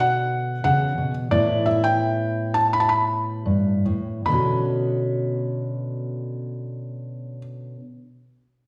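A felt-muted upright piano carries the melody up front, its soft, mellow tone close enough that the action noise of the keys is audible. A dark, full-bodied fingerpicked jumbo steel-string guitar accompanies it, moving between Bmadd9 and Asus2 chords in this intimate, reflective acoustic folk fragment. The pace slows over the first 4.3 seconds before a second section begins, and both parts sit in the wet reverb of a recital hall until the guitar rings out to 7.8 seconds.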